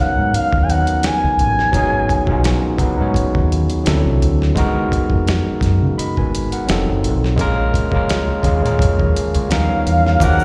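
An overdriven tine electric piano leads the ear throughout this smooth, sultry neo-soul R&B excerpt, its barky, gritty tone pushed up front through a combo amp as it carries the harmony from G#m11 through D9, C#13sus4, F7b9 and A#m7 to D#7b13 in G# dorian. The groove sits at 85 BPM in 4/4 with a gentle 16th-note swing, anchored by a deep, round fingered electric bass and a dusty, sampler-style kit that enters at 0.3 seconds with a thumpy kick, medium-tuned snare and hi-hat, compressed and tape-toned. An expressive synth lead, nasal yet mellow with chorus, vibrato and slapback echo, sings the melody in the opening seconds and returns near the end at 9.5 seconds. In the final moments, from 10.2 seconds, a soft horn section adds brief stabs in the background alongside an egg shaker. The whole performance sounds like a live gig heard through a venue's PA, set in recital hall reverb.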